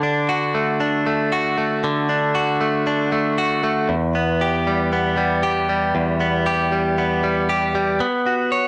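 Restless and wistful, this short indie pop fragment moves at 117 BPM in a straight 4/4, set in E minor. A single clean electric guitar carries the whole passage from 0.0 to 8.7 seconds, recorded direct and placed up front. Its picked tone is bright and twangy, with compression keeping it even, and it ranges from E2 up to C#5. The harmony starts on D, shifts to E minor at 3.9 seconds and lands on Bsus2 at 8.0 seconds, and the passage is cut from a longer piece. A moderate spring reverb and digital ambience surround the guitar, while the cassette tape character gives it the intimate, homespun feel of a home recording.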